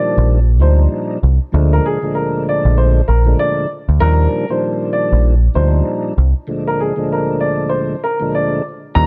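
A dark, woody upright piano carries the melody from the first moment, joined by a fat, lightly overdriven tonewheel organ with chorus vibrato, key click and a slow rotary speaker. This is a soulful, nostalgic hip hop groove at 97 BPM in 4/4, with a swung sixteenth-note feel. The deep dub picked electric bass enters at 0.2 seconds, round and amped, sitting up front and loudest in the mix. The mellow, vintage-sounding piano carries a slapback echo, while the organ sits in a lower range beneath it. The harmony moves between Ebmaj9 and Bb7, and a break begins at 6.5 seconds over Bb7/D. The production is dark and warm, with light studio reverb, in this brief cut from a longer piece.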